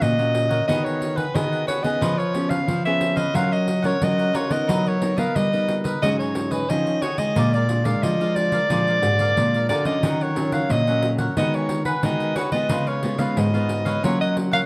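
A straight 4/4 pulse at 90 BPM drives this bittersweet, nostalgic samba and choro excerpt, with a jingly pandeiro played with hard hands, a crisp, bright picked cavaquinho and a fingerpicked nylon-string guitar filling out chords that move from Ebm7 through Db7/F and Bb7 before settling on Gbmaj7. Beneath them, a second nylon-string guitar supplies thumb-plucked classical bass lines. Up front, a soprano saxophone carries the jazz-style solo melody with a soft attack, light vibrato and a smooth, warm top, all set in a moderate large-studio reverb.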